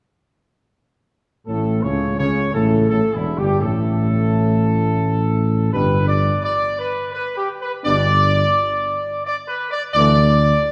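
Classical brass music in 3/4 at 85 BPM, this triumphant, regal excerpt is cut from a longer piece and sits in A mixolydian, tuned slightly sharp to A4 = 441 Hz. A trumpet section carries the melody from 1.5 s, its tone dark and punchy, tight and up front yet distant and roomy. Beneath it, a French horn section with light vibrato and a smooth top holds sustained chords in the background, alongside a clear, tight trombone section that also carries light vibrato. A close-miked solo tuba anchors the bass up front with a dark presence. The harmony moves from A to G at 5.7 s and settles on Dsus2 at 9.9 s, all wrapped in a wet concert hall reverb with a long 2.4-second decay.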